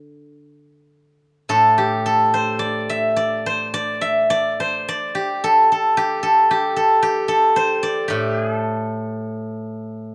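A solo steel-string zither, plucked with fingerpicks, carries this brief Chinese traditional passage, its silvery, ringing tone sitting up front and given a touch of slapback echo. The mood is pastoral and serene, the playing floats freely in rubato across a range from A2 to E5, and after a short opening phrase a new section begins at 1.5 seconds and runs to the close at 10.1 seconds. Recorded outdoors with a dry, open sound, it is cut from a longer piece.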